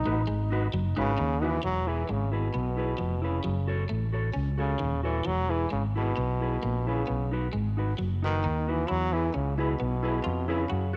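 A bright, up-front trombone carries the melody from the opening moment of this bouncy, upbeat ska excerpt, its pop-style line sung with a light vibrato over a round, punchy fretless bass that sits forward with tube saturation and a subtle chorus. A picked electric guitar on the edge of break-up plays a twangy, compressed riff bathed in spring reverb, while a dark, clean, fingered electric guitar fills in the accompaniment with a slapback echo. In the background, a percussive tonewheel organ adds stabs with key click, second harmonic percussion, chorus vibrato and a fast rotary speaker. The organ drops out at 1.6 seconds as the harmony moves through E, F#m, E and B before returning to E, then the organ comes back at 9.1 seconds for the final stretch. A light reverb gives the whole band a touch of room, with the trombone and bass leading the mix.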